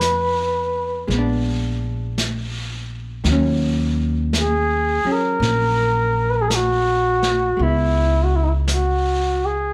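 A mellow flugelhorn carries the melody from the first moment, its soft attack and gentle vibrato set in plate reverb so it sounds distant and roomy even while sitting up front. This is a slow, melancholic jazz ballad at 55 BPM in Eb minor, with a swung 4/4 feel and an intimate mood. A dark, clean hollow-body electric guitar picks the accompaniment beneath it, moving through Fm7b5 and Bb7b9 before settling on Ebm7 and then shifting to Dbm7 at 7.6 seconds. The upright bass is woody and close, plucked low in its register. A vintage brush kit sits mid-forward, with brushed snare and hi-hat and a rolled-off top end, all heard in a moderate club-sized room in this short fragment cut from a longer piece.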